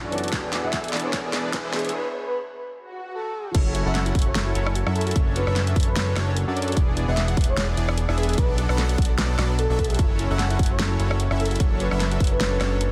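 A concert grand piano with tape echo and veiled, muted strings open this bittersweet, half-time future bass excerpt over a fat, detuned analog bass and a smooth supersaw riff, both pumping to the sidechain. A punchy layered kick, a pop kit with a fat snare and a breathy flute-like lead with chorus, vibrato and delay join within the first moments, while a riser, a filter sweep and a drum fill build to a break at 1.9 seconds. The drop at 3.5 seconds then brings in a soft, warbling pluck playing quiet arpeggios under emotional seventh chords.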